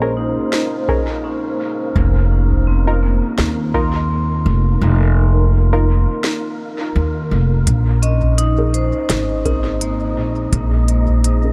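A woody, thumpy upright bass sits up front in this meditative ambient dub excerpt, its pizzicato gut strings carrying the low end at 84 BPM in Bb minor with a lightly swung sixteenth feel. Around it, a vibraphone struck with medium hard mallets plays ringing, metallic arpeggios through a low-pass filter and dub echo, close-miked and full. In the background, a deep, moody pad of detuned sawtooth voices with a sub octave holds sustained chords under chorus and reverb, while muted, mellow chord stabs with a filter pluck echo into the distance and an airy, breathy wind-like noise texture drifts beneath. An organic electronic kit with a woody snare and crisp hats comes in at 0.5 seconds, its tape-touched sound sent into dub echo, and a dry analog kick joins at 0.9 seconds before dropping out from 4.8 to 7.7 seconds. The harmony moves from Bbm7 to F7sus4 and back to Bbm7, and the overall mix stays close and dry, with little room sound.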